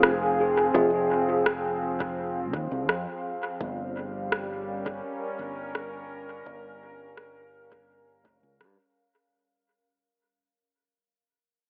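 A warbly, tape-like pad leads this short cut from a longer ambient dub piece, holding detuned, nostalgic chords up front with chorus and its own reverb, its slow attack and long release giving it a lo-fi, mellow haze. At 84 BPM in a straight 4/4, the deep, meditative mood sits on an F minor chord that moves to Gm7b5 at 3.6 seconds. A bell-like tine electric piano adds bright, clean stabs with dub echo in the background, heard only through the first 0.9 seconds. A fingered electric bass plays a punchy, amped line low in the mix under a filter sweep, while an overdriven electronic rim click sits up front with dub echo and small room ambience, joined by a soft, overdriven electronic kick from 0.8 seconds. The whole passage fades out through a telephone-like band and a moderate echo-chamber reverb.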